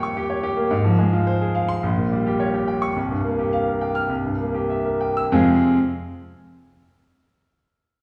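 Agitated and stormy, this brief cut from a longer classical virtuoso piano study in F minor moves in a rubato 4/4 at 94-110 BPM, its clear, smooth concert grand with deep bass and a vintage tone sitting up front across a Bb1 to F6 range, slowing down through diminished and suspended harmonies over the opening 5.3 seconds before arriving on F minor, then falling silent at 5.8 seconds, all set in the recital hall's wet reverb, heard from further back in the room.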